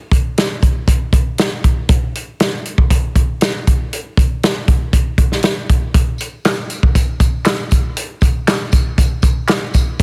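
Uplifting and danceable, this short soul excerpt rides a straight 4/4 groove at 118 BPM. A natural, acoustic drum kit carries the whole passage from 0.1 seconds, its punchy kick, medium-tuned snare and hi-hat sitting up front in a studio-room sound. At 6.2 seconds a tambourine and group handclaps join quietly underneath, with a tube shaker adding a vintage, band-limited colour. The mix is dry, with little reverb, and pressed hard by multiband compression into a dense, radio-ready sound. The passage stays in a single section throughout, a lean rhythmic bed cut from a longer piece.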